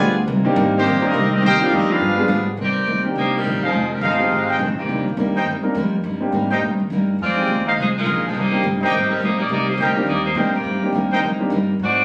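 A swung 4/4 pulse at 208 BPM drives this brassy, sultry big band excerpt in C minor, cut from a longer piece. The upright bass, pizzicato on gut strings with a woody thump, runs the full 12 seconds alongside a dark, boxy ladder-braced acoustic guitar whose picking carries audible finger squeak, while an intimate concert grand with audible action noise fills in from 0.4 seconds. A distant, roomy trumpet section carries the opening melody over a tight trombone line and very quiet sustained trombone chords, all three brass parts dropping out by 2.6 seconds. From there a clear, vintage saxophone section with light vibrato takes the lead, stepping out up front, while a dark trumpet section with a smooth top and soft attack punches in stabs from 3.6 seconds. The harmony circles Cm7, Fm7 and a G7b9, and the sound carries light reverb from a phone recording made in the room.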